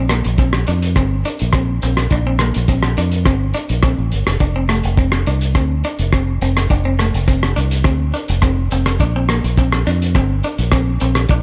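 A straight 4/4 groove at 104 BPM drives this sunny, danceable highlife guitar band excerpt, where a cloth-damped, thuddy drum kit of muffled, gritty hi-hat, tight kick and rim click sits up front beside a round, dark fingered electric bass, while a clean, picked electric guitar with spring reverb adds accompaniment in a dry room over chords moving from Bbadd9 to F5 at 4.4 seconds and back at 9.0 seconds.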